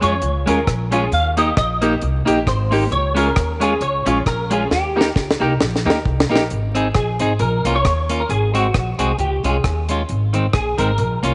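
A lightly swung ska groove at 134 BPM in Ab major rides on a dry, up-front reggae drum kit with a high-tuned snare, tight kick, rim click and hi-hat, alongside a woody pizzicato upright bass, with a drum fill from 4.7 to 6.5 seconds. Over it, a clean, picked semi-hollow electric guitar carries the joyful, bouncy melody through an ensemble chorus, and a second fingered hollow-body guitar accompanies. A bright, worn, slightly detuned upright piano adds stabs in the background until 6.4 seconds, while light studio reverb, vinyl crackle and a softened top end color this cut from a longer piece.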